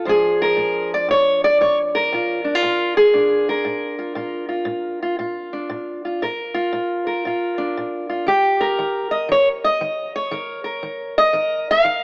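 A fingerpicked steel-string acoustic guitar opens straight away and carries this short acoustic country blues alone from the first moment to the last at 12.0 seconds. The mood is laid-back yet rollicking, with a relaxed swung eighth-note feel in four that keeps things loping along at an easy pace. The guitar sits up front with a warm, concert-ready tone, reaching from deep bass notes up into the treble. The harmony rests on a single chord until 8.3 seconds, when it shifts to a new one. A moderate plate reverb lends a lingering halo, while an AM radio coloring gives the whole passage a boxy, old-broadcast character, and the excerpt itself is cut from a longer piece.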